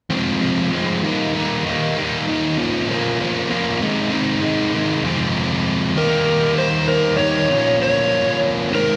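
Drenched in a wet recital-hall reverb with a digital ambience, this short rock fragment has a big arena sound and a gritty, swaggering mood in a straight four-four feel. A sludgy, double-tracked electric guitar sits up front from the opening moment, its picked, overdriven riff stretching from low in its range to high and running through the whole clip. The chords move from Fm through Eb and Bbm to Ab/C, then return to Fm as a second section begins at 5.0 seconds. At 6.0 seconds an overdriven slide guitar enters with a warm, fingered melody in a narrow upper range, trailed by a slapback echo. The two guitars play together at the same level until the fragment ends at 9.0 seconds.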